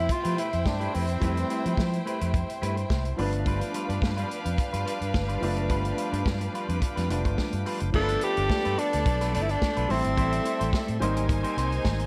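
A straight four-four disco groove sets a celebratory, glamorous tone in this excerpt from a longer piece. It is driven by a vintage drum kit with a punchy kick, medium-tuned snare, hi-hat, crash and dark cymbals, recorded up front in a small room with a rolled-off top. A fingered electric bass sits equally forward, bright and growly through its amp, while a grand piano and a clean, twangy picked electric guitar with spring reverb fill in the accompaniment. A rich studio violin section carries a bowed second line throughout, focused and close with vibrato. The breathy tenor saxophone leads up front in a smooth jazz style, stating the melody briefly at the start and returning from 8.0 to 11.0 seconds as the harmony moves into a new section. From 3.5 seconds a reedy tonewheel organ holds sustained chords in the background, lightly overdriven with key click and a slow rotary speaker, and the whole is set in light studio reverb.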